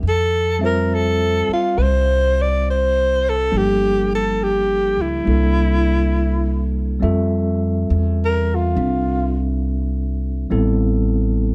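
Jazz ballad in F major at 69 BPM, with a swung 4/4 feel and a tender, late-night mood, cut from a longer piece. A breathy, close-miked alto saxophone carries the melody up front with vibrato, subtone and a slapback echo, moving into a solo at 7.0 s and falling silent at 9.4 s. Beneath it sit a woody, thumpy pizzicato upright bass on gut strings and a bright, clean tine electric piano accompanying through chords such as Gm7, C13, Fmaj7 and Am9, all captured in a dry, close 1970s-style studio sound with a touch of reverb.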